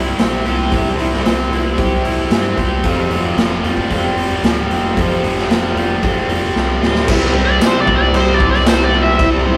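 A rough rehearsal-room recording in a wet small room gives this swaggering, brooding classic rock excerpt its raw edge, with a gritty, punchy garage drum kit up front and a round, dark, overdriven bass beneath two distorted electric guitar riffs, one tight and forward, the other scooped and very quiet, while a picked jumbo steel-string acoustic guitar sits in the background. After a drum fill, a lush, vintage string machine enters very quietly at 7.1 s, a biting lead guitar with overdrive and analog delay comes in at 7.5 s, and a jingly tambourine joins at 7.6 s.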